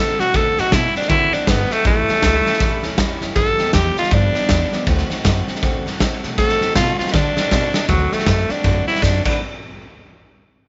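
Rollicking and retro, this rockabilly excerpt swings at 159 BPM in D mixolydian, with a raspy, forceful tenor saxophone carrying the melody up front over a bright, jumbo-bodied picked acoustic guitar in the background, a woody, thumpy pizzicato upright bass, and a saturated garage drum kit in a pumping stone room whose fills land at 7.1 and 9.0 seconds, all over chords that run from D7 through A7 and G7 to a closing D13.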